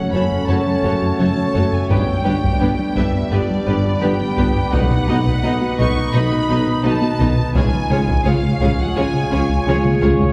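Cinematic hybrid orchestral and electronic film score, vast and relentless, in a straight 4/4 and cut from a longer piece. A barely audible, huge impact opens the passage before a distant taiko ensemble played with hard sticks enters at 1.9 seconds and drives the music from the background of a large room, ending in a drum fill at 9.7 seconds. A lush violin section carries the smooth, vibrato-rich melody, with a second, more distant violin section and a very quiet viola section filling in beneath it. Low strings from cellos and a double bass section with portamento join a dark, close-miked tuba on the bass, while a mellow French horn section and an evolving, warbling vintage analog drone with chorus hold sustained chords. A rubbery, hollow square-wave bass riff bounces through the lower register, and a round, tine-like synth pluck with a nasal edge spins quiet arpeggios. A generous scoring-stage reverb places the orchestra further back in the room as the harmony moves from F#m through G and B to C#.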